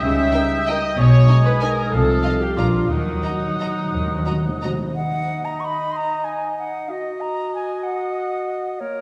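A rich double bass section and cello section anchor this elegant, sweeping classical passage in Eb minor, a rubato 3/4 at around 164-202 BPM, beneath sul tasto violas, mellow French horn chords and two quiet violin sections, one pure and floating on the melody, the other dark. An airy wooden flute with vibrato and a crisp attack, a vintage-toned oboe and a background clarinet carry second lines throughout, while timpani struck with hard mallets add a fill from 2.9 s. The strings, horns and timpani stop by 5.0 s, leaving the three winds alone in a moderate scoring-stage reverb.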